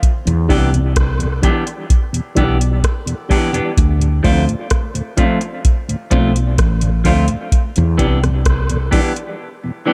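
This hypnotic, spacious dub reggae excerpt opens at 0.0 s with a soft vintage rhythm box: a deep kick, metallic hi-hats and rim clicks, dry and gritty with overdrive, sitting up front. A woody fretless electric bass and a tonewheel organ join at 0.3 s. The bass is round and hollow-bodied, direct and amped, and holds the low register up front. The organ stays in the background, lightly overdriven with key click, vibrato and a slow rotary speaker, thinned by a high-pass filter and trailed by dub echo. A semi-hollow electric guitar enters at 0.5 s, clean and picked with a warm tone, also filtered and echoing. The harmony moves from Em7 to Dm7 and back at an unhurried 64 BPM in straight 4/4, with light reverb and digital ambience, and the drums drop out near the end for a brief break.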